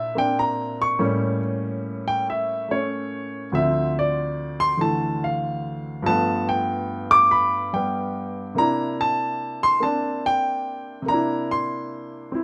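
Solo jazz at 95 BPM in 4/4, with a playful, swinging eighth-note feel in C mixolydian. A warm baby grand piano carries the whole excerpt alone, sounding natural and up front with light reverb, spanning from D2 to D6 as it moves through C9, A7b9, Dm7 and G9 before settling back on C9 at 8.6 seconds. Cut from a longer piece, the passage lasts 12.4 seconds.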